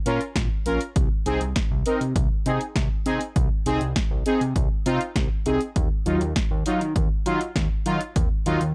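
At 0.1 s a house drum kit, a fat analog bass and analog synth brass come in together on this bright, wistful synth-pop excerpt, set at 100 BPM in a straight 4/4 in Ab mixolydian and tuned to A4 = 441 Hz. The up-front, tape-warm drums are electronic and layered, with a punchy kick and snare over warm hi-hats. Beneath them the bass is thick and mellow, built from detuned sawtooth and square waves with a filter sweep and a moving notch, sustaining low in the mix. Carrying the accompaniment, the brassy, bold synth brass sits up front, evolving through its own filter sweep with chorus and vibrato over a detuned sawtooth tone. The harmony moves from Bbm to Ab/C and arrives on Ebmadd9 at 5.8 s, all heard through a dry, gritty hardware recording with a digital ambience.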